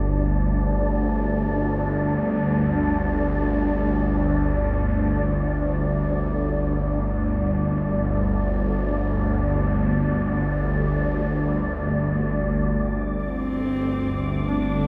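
A tense, sawtooth-edged drone, low and bowed-like with a detuned shimmer, a phaser and vibrato, sits up front from the start while a breathy, wind-like tuned noise texture hovers far above it. The result is a cavernous, ominous dark ambient piece in free time, soaked in a huge, dreamy reverb. Near the end, at 13.2 seconds, a husky horsehead fiddle enters close and intimate, its single player sliding between a few notes with light vibrato and an analog delay trailing behind.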